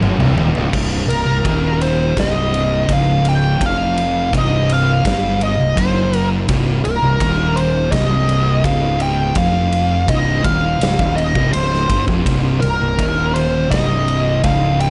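A dark, warm studio sound frames this sludgy, brooding stoner and doom metal excerpt at 83 BPM in C minor, cut from a longer piece. It opens on a drum fill from a big acoustic kit with a punchy kick and medium-tuned snare in a stone room, while a bright, double-tracked distorted guitar riff stops at 0.7 s. Two thick fuzz guitars, one mellow and one shadowy, grind low riffs in the background over a growly, overdriven fingered bass, and from 1.1 s an up-front, compressed fuzz lead guitar with wah carries a high melody over the Cm chord.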